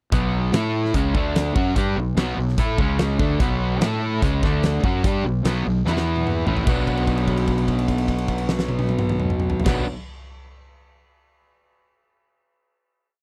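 Gritty and swaggering, this complete classic rock piece runs at 147 BPM in a straight 4/4 and sits in B minor. A distorted electric guitar and an overdriven semi-hollow guitar, both picked and up front, play a power-chord riff together, one compressed and warm, the other dark with a hollow-body character. A growly, fuzzed fingered electric bass doubles the guitar riff with a simple root-and-fifth line, while a big rock drum kit drives a rock groove with a punchy kick, fat snare and bright cymbals. The riff cycles through B5, A5, C#5, D5 and Bm before a drum fill at 5.9 seconds pushes through E5 and A5 into a final Bm chord at 6.7 seconds, which is held to the end. The sound is a dry, close 1970s-style studio recording with little reverb.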